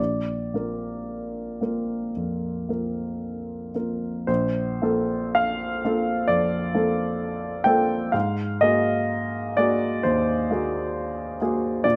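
Lightly reverberant and close, this luminous, serene fragment of a longer impressionist classical work features a solo grand piano with a warm, up-front tone, played with free rubato at a slow 53-68 BPM in 4/4 and Bb major, spanning Bb1 to G5 as its lush harmony moves from Bbadd9 to Bbmaj9 at 4.3 seconds and then to Ab9 at 8.1 seconds.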